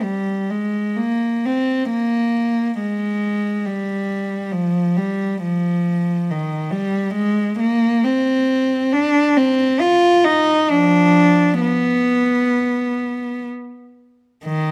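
Close, detailed microphones place a single bowed cello up front in an intimate space, with a touch of light reverb around it. This is an expressive classical fragment for unaccompanied cello, cut from a longer work, and its mood is yearning and mournful. The player moves in a free, rubato feel, with the line stretching and settling within a range from Eb3 to F4. The tone is soft-edged and breathy: played sul tasto, each note begins with a gentle attack, the bow sounds airy, and a light vibrato colours the sustained pitches. The cello plays alone for the full 14.7 seconds, so the attention stays on the grain of one instrument and the sorrow in its phrasing.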